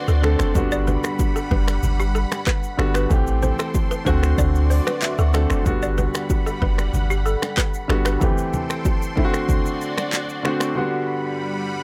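A joyful, sunny afrobeats excerpt at 94 BPM in G major opens with an intimate concert grand piano, its action noise audible, over a lush pad of detuned sawtooth voices treated with chorus and phaser, cycling through Gmaj7, Am7 and D7 chords. An up-front electronic drum kit, with its deep kick, crisp hats, finger snaps, handclaps, rim clicks and shaker, drives the groove alongside a punchy sine sub bass and a woody balafon riff echoed by digital delay, while very quiet congas and bongos ring close underneath. The piano adds a fill at 4.4 seconds, and the balafon and bass drop out by 8.2 seconds, leaving piano, pad and percussion.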